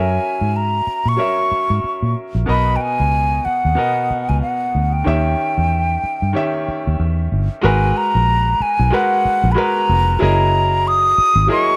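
Silky and smooth, this short slice of lush 1970s-style soul moves at 93 BPM in G# minor with a gentle sixteenth-note swing, drifting through F#7, Bmaj7 and D#7b9 before settling on G#m9 at 7.6 seconds and closing on F#13. A mellow, hollow silver flute sits up front carrying the melody with a pure tone, tongued notes and vibrato, while a bright, polished grand piano supplies short-sustained chords with brilliant highs and deep low notes. A round, punchy fingered electric bass with a dark, amped, foam-muted sound anchors the groove until 11.5 seconds, all set in light reverb and a small-room ambience.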